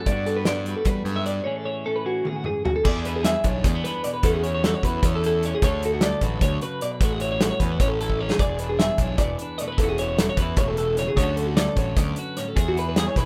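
A bright, twangy twelve-string electric guitar opens this math rock and midwest emo excerpt, its picked, compressed arpeggios sitting up front alongside a softer clean electric guitar that plays accompaniment across a lower range. Almost at once a fuzz-driven, overdriven picked bass and a loose indie drum kit join. The kit pairs a tight kick and medium-tuned snare with dark cymbals, hi-hat and toms in a pumping small room. The tempo is a brisk 303 BPM counted in eighths, in a straight 7/8 in A major, with a bright, intricate mood. A drum fill at 2.3 seconds leads into the longer second section at 2.9 seconds, where the harmony moves through E7, A6/E, Dmaj7 and A6 before another fill around 8.1 seconds and a close on E. Light reverb and small room ambience give the piece the rough feel of a home demo, with the twelve-string, bass and drums pushed forward.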